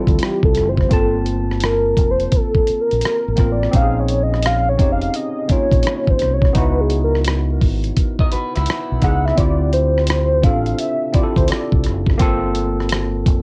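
A velvety, detuned synth lead carries the melody over a worn, slightly out-of-tune tine electric piano from the start, its sound thickened by chorus, plate reverb and tape echo in this late-night, introspective neo-soul R&B cut at 85 BPM with a swung 16th-note feel. A deep, round dub bass anchors the minor ninth chords, which open on a rootless Dm9, while a gritty, compressed sampler-style kit with a thumpy kick, hi-hat and rim click sits up front. A slightly broken-up electric guitar through a small old amp adds a brief second line from 8.2 to 9.3 seconds, and the lead drops out at 11.9 seconds, all with the hazy character of a home cassette recording.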